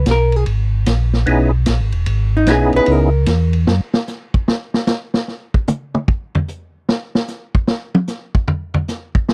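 A dry, close 1970s-style studio sound with light reverb frames this late-night, bluesy soul jazz organ trio fragment at 150 BPM in a swung 4/4 on C#m7. A dark, picked hollow-body electric guitar comps, and a round, mellow tonewheel organ bass with chorus vibrato and slow rotary speaker anchors the groove. A fat, percussive organ melody with key click enters at 1.3 s, before a punchy-kicked drum kit with dark cymbals takes a solo from 3.7 s and carries it through to 9.3 s.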